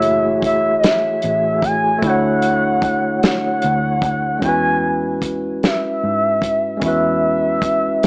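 Slow six-eight R&B at 50 BPM in E mixolydian, tender in mood, this short excerpt moves from F#m9 to Dmaj7 before settling on E6 at 4.4 seconds. A smooth, gliding sawtooth lead with chorus and vibrato carries the melody up front over a barky, lightly overdriven tine electric piano and a dark, foam-muted fingered electric bass, while a soft, flute-like tonewheel organ with slow rotary speaker sits in the background until it stops at 4.4 seconds. A small-room soul drum kit with a tight kick and medium-tuned snare keeps time throughout, and light reverb and a small speaker sound give the whole a vintage color.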